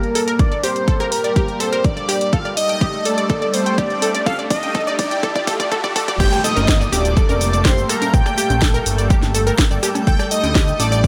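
Progressive house at 124 BPM in G minor, this expansive, emotional excerpt opens with a build-up under a filter sweep, where a thick, mellow unison lead with tape echo and vibrato sings over a lush pad treated with chorus and phaser, a bright detuned pluck arpeggio, an overdriven house kit with cracking snare and bright hats, a punchy, tape-warm kick up front, and a very quiet riser and downlifter. A drum fill leads into the drop at 6.2 seconds, where a fat, detuned analog bass, a soft, airy supersaw second line and dry background cowbell and congas arrive, joined at 7.1 seconds by a faint, twinkling granular shimmer on G5. Chords move between Gmadd9 and Dsus4, with sidechain pumping on the pad, pluck, bass, supersaw and percussion, all in light reverb.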